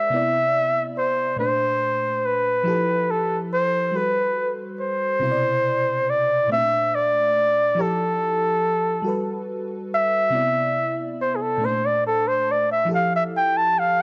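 R&B in a slow 6/8 at 47 BPM, this intimate, tender passage in C major is cut from a longer piece and cycles through Cmaj9, Bbmaj9, Fmaj9 and Gmaj9 chords. A warm flugelhorn carries the melody up front in a jazz style, with soft attacks, scooped notes and vibrato. Beneath it sits a lush, dreamy FM electric piano with a soft pad layer, dark and detuned with warbling chorus, all captured in a dry, gritty recording with light reverb.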